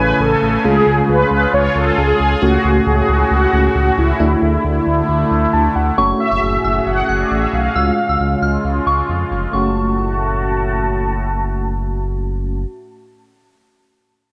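A dreamy pop mix soaked in a long plate reverb gives this melancholic, cool piece, cut from a longer work, a hazy, floating sound in straight 4/4 time. A mellow synth brass carries the melody with a brassy, round, detuned tone, lifted by chorus, vibrato and delay. Underneath, an FM electric piano with tremolo and phaser adds decaying chords and plays a brief fill at 5.3 seconds, while a sweeping resonant pad sits up front with evolving, bright sustained chords. A smooth gliding synth bass, dark and fast in attack, slides between notes with portamento. At 6.0 seconds a filter sweep begins and a soft, pure synth bell enters as a gentle second line, drifting with chorus, phaser and delay until 10.8 seconds.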